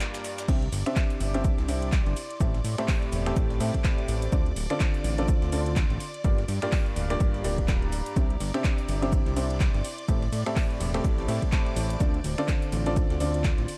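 A punchy, overdriven electronic kick drives this joyful, uplifting piano house excerpt at 125 BPM in 4/4 with a 16th-note swing, entering at 0.5 seconds together with a fat, detuned sawtooth analog bass up front, while a clear, woody, slightly detuned upright piano riff with digital delay and sidechain pumping carries the harmony through Cadd9, Am7, Dm7 and Gm7 in C mixolydian. Behind them sit shimmering vintage string-machine violins with ensemble chorus, a warbling, nostalgic lo-fi pad with phaser and built-in reverb, a gritty sampler-style breakbeat kit with a high-tuned snare, and a layered house kit of metallic hats, ride, crash, claps and finger snaps. The production is dark, set in a digital ambience.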